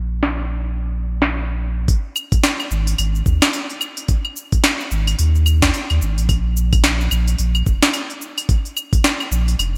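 A deep, round sine sub bass sits up front from the very start, its fast attack giving way to long, mellow sustained tones that pump under sidechain compression. This is a meditative, hypnotic slice of organic downtempo, cut from a longer piece, moving in 4/4 with a swung sixteenth-note feel. An electronic afro-pop drum kit arrives almost at once, its cabasa, claves, smooth hi-hat and sharp snare darkened by low-pass filtering and touched with gated reverb. At 1.9 seconds a knocking electronic kick drum joins up front, shifting the music into its second section and anchoring the groove. The mix carries a light reverb and a bright production style recalling 1980s digital records.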